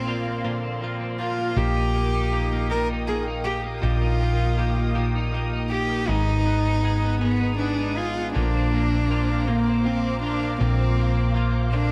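A tender, swaying pop ballad in six-eight unfolds at 53 beats per minute in Eb major, opening at once with an intimate bowed cello carrying the melody up front over a compressed, double-tracked twelve-string electric guitar. The cello plays sul tasto with light vibrato, a soft attack and an airy bow, sounding close like a single player, and a digital delay trails behind its line. Underneath, a round, punchy hollow-body short-scale bass, fingered and amped, sits prominently in the mix with a dark tone, while a vivid, twangy clean electric guitar recorded direct picks arpeggios in the background. A muted studio string section, con sordino and veiled, adds lush sustained chords from a distance. The harmony moves from Bbadd9 to Eb/Bb, darkens on Abm at 6.1 seconds, and returns to Bbadd9 at 8.4 seconds, all heard within a small room ambience in this brief passage taken from a longer piece.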